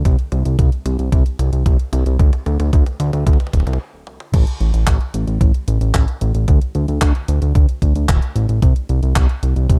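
Dry, dark and warm, this short cut from a longer italo disco track sets a romantic, playful mood at a straight 112 BPM in 4/4. A fat analog bass sits up front from the very start, thick and mellow, blending detuned sawtooth, square and triangle tones with ring modulation, a filter sweep, a fast attack and sustained notes, moving between D1 and D2. From 0.1 seconds a gritty, thumpy electronic kick drum joins it up front, compressed and sampler-style at its natural pitch. Further back, a clean 12-bit digital drum machine with a tape-like glow supplies crash cymbal, handclaps, hi-hat and toms, its hats, toms, cymbals and snare thinned by high-pass filtering. A drum fill runs through the opening, the groove stops briefly from 3.8 to 4.3 seconds, and the track then moves into a new section that carries it to the end.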